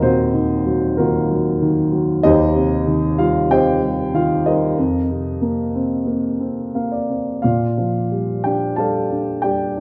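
A dark, mellow grand piano sits up front with a boxy tone in this brooding, cool classical excerpt, playing lyrically with rubato through rich chords that settle onto a Bb6 at 7.4 seconds after a brief fill, all wrapped in a moderate concert hall reverb.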